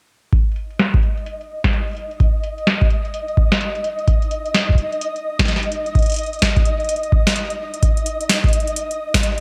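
Glitchy and eerie, this IDM fragment from a longer piece moves at 128 BPM in 4/4 with a 62% swing on the sixteenths. An overdriven electronic kick drum sits up front with a deep, analog thump, while a booming analog drum machine adds a crisp snare and metallic hi-hats, low-pass filtered and carrying a filter sweep, both entering at 0.3 seconds. From 1.1 seconds a flickering, grainy texture with a slow attack and long release hovers around D#5 in its own reverb, all set in a moderate digital room.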